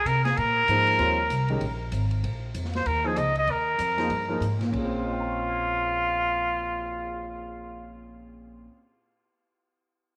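A muted trumpet opens this brief cut from a longer modal jazz piece, its straight-muted tone nasal and breathy, with light vibrato, scooped notes and a tape echo trailing the melody. Upright bass and an open jazz kit join almost at once. The bass is plucked, woody and growly, and the kit sounds dark and smooth in a small room, with a boomy kick, a medium-tuned snare, ride, hi-hat and crash, a cymbal swell and a rolled-off top. A warm, natural grand piano enters at 0.7 s to add accompaniment over a single suspended harmony, Ebsus4, which shifts to Ebsus4/Bb at 2.2 s. The swung, brisk feel carries a searching, cool mood, with the trumpet out front yet slightly distant and roomy. Light studio reverb frames the group, and the piano is the last to sound, ringing on until 9.0 s.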